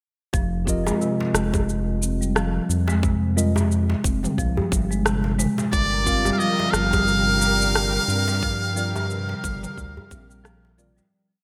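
A buzzy, metal-muted trumpet enters at 5.7 s with forceful, scooped jazz call phrases over an earthy organic downtempo groove at 89 BPM, built from a woody marimba loop drifting against the bar, long gliding notes from a round analog bass, a tight electronic kick, an electronic kit of cabasa, rim and low toms in gated reverb, distant cracking djembe, sparse tremolo electric piano stabs with echoing delay, and dark sul tasto strings, all in a lush hall with bright 1980s-style digital sheen before fading out from 7.5 s.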